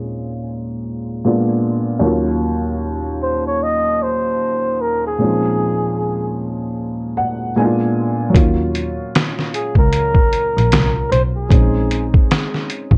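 Hazy and reflective, this lo-fi hip hop excerpt in Eb dorian at 76 BPM with a swung feel opens on a dark, woody upright piano with audible action noise and a cassette-tape haze under a filter sweep, joined at 3.2 seconds by a breathy flugelhorn melody with scooped notes and an analog delay, before a muffled, pitched-down sampler-style drum kit with a thumpy kick and a rich, bowed double bass enter around 8.3 seconds over chords moving between Bbm11, Bb7b9 and Ebm7.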